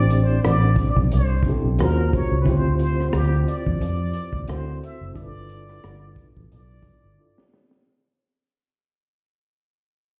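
A lightly swung sixteenth-note groove in four rides on a crunchy breakbeat kit of hi-hat, kick, rim click and high-tuned snare, gritty with a rolled-off top, beneath a round, foam-muted fingered electric bass sitting up front, in a smooth, sultry neo-soul R&B fragment cut from a longer piece. A barky tine electric piano, lightly overdriven with fast tremolo through a combo amp, comps over chords moving from Am7 through Ebm11, Dm11 and D9 to G9, while a distant plunger-muted trumpet plays a forceful, wah-wah jazz solo with light vibrato and slapback echo. The whole mix sounds muffled through a wall inside a stone room, fading out from the start, and the drums close with a fill at 7.2 seconds.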